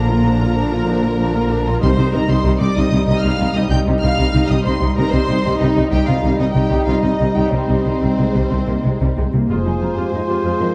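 Rolling along in 12/8, this adventurous, swashbuckling cinematic passage sets a lush string body against clear trombone chords in the background: a violin melody sung with vibrato and portamento, an intense second violin line, expressive violas, soft-attack cellos and rich, up-front double basses. Hard-mallet timpani, close and dry, sound briefly at 1.8 s. At 9.5 s new colours arrive as a clear clarinet and a pure, hollow flute section add second lines, mellow French horns hold chords and a vintage-toned solo trumpet plays stabs, all within a dark production and a moderate scoring-stage reverb.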